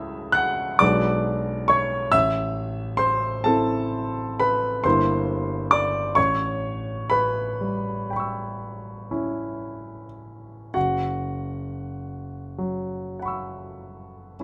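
Close, detailed microphones and a light reverb place a grand piano up front, so the intimate sound carries the audible noise of its action along with each natural, clear tone. This is a short fragment of impressionist classical solo piano, lasting 14.4 seconds and cut from a longer work, with a wistful, mysterious mood. The piano plays alone throughout in a slow, rubato 9/8, its phrasing stretching and yielding freely, and it ranges from F#1 in the deep bass up to F#6. The harmony drifts through colorful chords, moving from C#m through Bm6, Am and Gm6 to a lingering A9, before settling on an unresolved F#7sus4 at 10.8 seconds. The instrument's short sustain lets each chord fade quickly, leaving the hazy progression suspended in quiet air.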